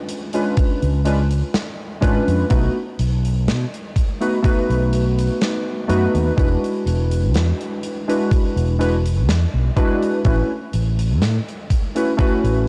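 Warbling, detuned lo-fi synth keys carry this woozy, dreamy vaporwave piece in A major at 62 BPM, their mellow, nostalgic tone coloured by analog chorus, analog delay and 12-bit sampler grit as they move through C#7b9, B7, E9 and A69. A thumpy, sampler-style electronic kick sits up front, a fretless electric bass adds an amped, warm low end from 0.8 seconds, and a huge arena kit's hi-hat and medium-tuned snare sound farther back with a pumping hall character. The kick and kit share gritty 12-bit crunch, and the whole mix is dry and saturated in this section cut from a longer piece.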